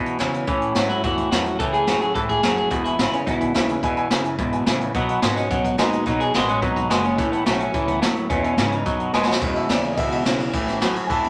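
A twangy, phaser-tinged electric guitar riff drives this rowdy, retro rockabilly cut in E major at 215 BPM, over a boxy, very quiet swing-style acoustic guitar, a thumpy gut-string upright bass and a distant, roomy brush kit with dark cymbals, while a slightly broken-up lead guitar carries the melody from 0.5 s, a woody upright piano joins in the background at 2.7 s, and after a drum fill at 9.1 s the piano takes a short solo to close.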